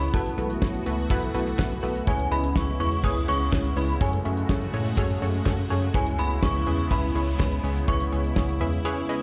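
Driving and cool, this synth-pop excerpt in C# minor at 124 BPM pairs an inharmonic FM synth chime melody with ensemble chorus, tremolo and analog delay over a punchy, detuned unison pluck, an airy sweeping resonant pad with chorus, a mellow tine electric piano carrying the bass up front, and a damped 70s drum kit with fat snare, tight kick, hi-hat and handclaps, moving through B7sus4, C#m7 and F#madd9 before the bass and drums drop out at 8.8 seconds.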